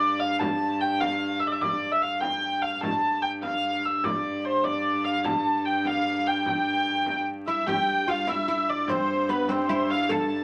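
Ancient and festive, this medieval dance excerpt moves in a straight 6/8 at 99 BPM, with a dark, nasal hurdy-gurdy carrying the melody up front over a rich, distant viola da gamba drone on G2 that rings with light vibrato and gut-string tone. A small, bright frame drum with a vintage, band-limited sound, struck with hard hands, enters at 0.4 seconds, and a woody, plectrum-plucked oud with double strings adds a second line from 7.5 seconds. The sound sits in a wet studio reverb with vinyl crackle and faint mains hum.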